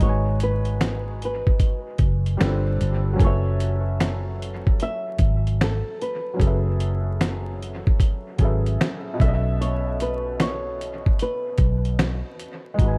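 Hazy and melancholic, this lo-fi hip hop excerpt sways on a swung 16th-note feel, with a dark, fingerpicked flamenco guitar carrying the melody through a low-pass filter and dub echo, its finger squeaks audible. Beneath it, a soft, felt-muted upright piano with a cassette-tape haze moves through chords like G#m7, F#m11 and B9sus4, while a round, foam-muted electric bass sits up front. A gritty, compressed sampler-style kit of thumpy kick, snare, hi-hat and finger snaps drives the groove, all wrapped in an echo-heavy mix with vinyl crackle.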